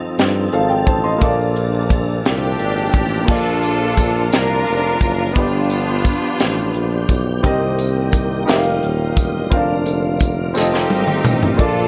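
A bright, woody upright piano and a lightly overdriven tonewheel organ, turning on a slow rotary speaker in the background, open this hopeful, soulful slow gospel passage in 6/8. They are joined almost at once by a close-miked tuba bass with vibrato and a crisp, polished fusion drum kit with a punchy kick and high-tuned snare. Lush bowed strings carry the melody up front from 2.3 seconds and return near the end, a jingly, vintage-sounding tambourine enters at 3.6 seconds, and a drum fill at 10.5 seconds leads toward the close of this cut from a longer piece, heard in light reverb.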